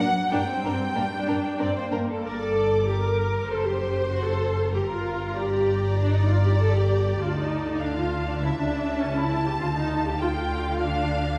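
Up-front violas carry a lush, expressive accompaniment with portamento in this quick, urgent and stormy classical-period movement for string orchestra in G minor, cut from a longer piece at 98 BPM in 4/4 with uneven, rubato beats. Above them the first violins sing a smooth, vibrato-laden melody while the second violins add a focused line, and rich cellos sit in the background over warm double basses as the harmony moves from G minor through F# diminished and back, then turns to D minor at 7.2 seconds. A wet scoring-stage reverb colours the sound, heard from further back in the room.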